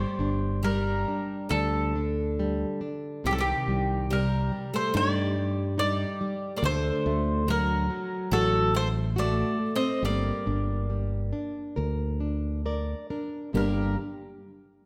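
A fado-style ballad in G harmonic minor, passionate and mournful, moving at a rubato 69 BPM in 4/4 over a Gm, Cm, D and back to Gm progression in a recital hall's moderate reverb. A round, up-front mandolin carries the picked double-string melody, while a bright twelve-string acoustic guitar shimmers with an octave-doubled second line, a fingerpicked flamenco guitar supplies warm accompaniment, and a dark fingered electric bass anchors the low end. A nylon-string guitar fill appears at 12.2 seconds just before a new section begins at 13.5 seconds, in this portion cut from a longer piece.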